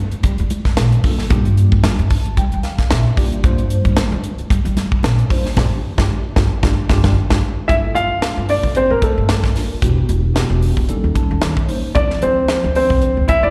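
The warm baby grand piano takes the melody up front from 7.7 seconds, its polished, short-sustained tone carrying a driving, intense electric jazz fusion groove at 113 BPM in 4/4 with a light sixteenth-note swing in G dorian. Underneath, a crisp, punchy drum kit with a high-tuned snare and hi-hat sits forward in an airy room, while a woody pizzicato upright bass holds the low end throughout. Bright, hard-handed congas with slapback echo sit in the background for the opening stretch, and a clean tine electric piano, lush with chorus, comps and adds fills across the passage. Alongside the grand piano's entry, a dark, clean hollow-body guitar plays a second line with slapback echo, as the harmony moves from Gm7 to Gm9, Em9, Eb7#11 and Dm9. A band accent lands just before that shift, and the whole take carries the feel of a live gig heard through a venue's PA with recital hall reverb, cut from a longer piece.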